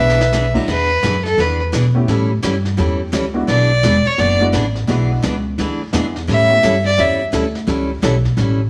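Western swing country at 171 BPM in 4/4, with a swinging eighth-note feel in E mixolydian, sets a down-home, swinging mood in this short cut from a longer piece. A brief drum fill opens on a jazz brush kit with dark cymbals, a medium-tuned snare and a boomy kick, while a breathy clarinet sounds a single B4 and stops at 0.6 s. The clear fiddle carries the melody up front with smooth, even bowing and light vibrato, taking a solo from 0.7 s until it falls away at 7.2 s. Beneath it, a bright, full-bodied picked dreadnought guitar with fresh strings and audible finger squeak picks out accompaniment, joined from 0.5 s by a detuned, jangly vintage upright piano with short sustain. A woody, thumpy pizzicato upright bass sits forward in the mix, anchoring the E9, A7 and A9 changes under a moderate studio reverb.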